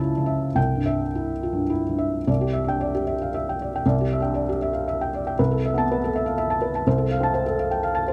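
Close, detailed and nearly dry, this short excerpt of neoclassical minimalist piano features a solo felt-muted upright piano, soft and mellow with a thick felt tone placed up front, spanning C2 to A5 in C major, slightly flat of standard pitch, in a rubato 3/4 between 102 and 126 BPM, moving from A/C# through C and Cadd9 to Amadd9/C and F/C with an intimate, peaceful mood that shifts into a new section at 2.3 seconds.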